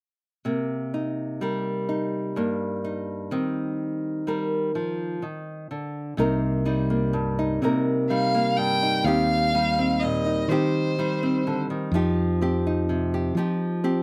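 A small, warm nylon-string guitar, fingerpicked and up front, opens this heartbroken, reflective folk excerpt in 6/8, moving through Cm7, Eb6 and Fsus2 chords. At 6.2 seconds a punchy, direct fingered electric bass joins, and from 8.1 to 11.6 seconds a single bowed violin carries a clear, focused melody with vibrato, distant in tone yet forward in the mix. The outdoor recording is dry, with little reverb.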